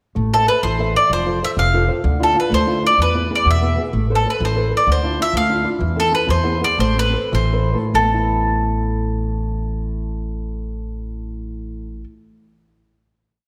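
A moderate concert hall reverb surrounds this short, complete Italian serenade in a straight 6/8, passionate and wistful in mood. Up front, a bright bowl-back mandolin picks hook phrases on its doubled strings, while a dark, thumb-plucked flamenco guitar supplies oompah bass notes and chord figures, and a woody, thumpy upright bass on gut strings plays root and fifth on the main beats. The piece moves through harmonies in A harmonic minor, slows from 5.8 to 7.9 seconds, and closes on a final chord held until 10.6 seconds.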